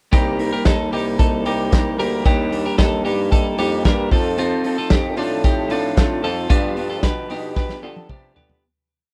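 A dry, close 1970s-style studio sound frames this wistful, restless piece of jangly indie pop, where a bright, twangy twelve-string electric guitar rings out picked arpeggios doubled in thirds over a slightly broken-up, lo-fi electric guitar strumming open chord shapes through a small old amp, a warm bassoon with light vibrato and slides carries a rounded, melodic bass line, and an up-front, gritty garage drum kit with a punchy kick drives a dance-floor beat with off-beat open hats before a drum fill at 7.6 seconds as the music fades out.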